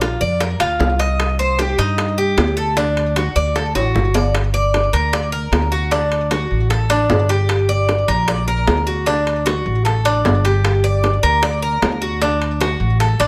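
A picked Cuban tres leads up front with metallic double strings and some octave-doubled courses, its arpeggios in G minor carried on a tape echo, while a woody, growly pizzicato upright bass thumps close beside it. This nostalgic, danceable son and guajira groove moves at 152 BPM in 4/4, with tight, high-tuned bongos sitting softly in the background and ringing metal-shell timbales filling out the percussion. A drum fill at 3.8 seconds leads into the second section, where the harmony rocks between G minor and D in a moderate studio reverb, in a passage cut from a longer piece.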